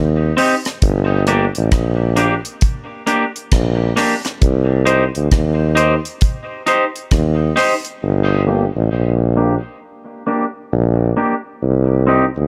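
Swung sixteenths at 67 BPM in 4/4 carry this deep, meditative dub reggae cut in G minor, where a clear, punchy, pop-style tuba with vibrato holds the bass line up front, a bright, twangy electric guitar through a small old amp adds picked, slightly broken-up, compressed accompaniment with tape echo and a low-pass filter that sweeps from 8.0 seconds, and a dry acoustic drum kit with a tight kick, hi-hat and rim click plays until 8.0 seconds inside a small room ambience.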